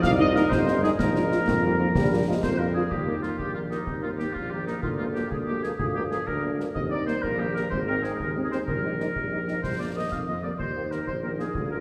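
Military-style march for wind band in 6/8 at 125 BPM in Eb major, festive and rousing, with a mellow, vintage trumpet section carrying the melody in the background, an up-front woodwind section with light vibrato and soft attack and a very quiet, smooth-topped euphonium on second lines, French horn accompaniment from 0.2 s, a trombone section holding sustained chords only until 2.9 s, a distant, roomy tuba bass, and close, dry concert snare and bass drum with dark cymbals, the ensemble set in the wet reverb of a concert hall.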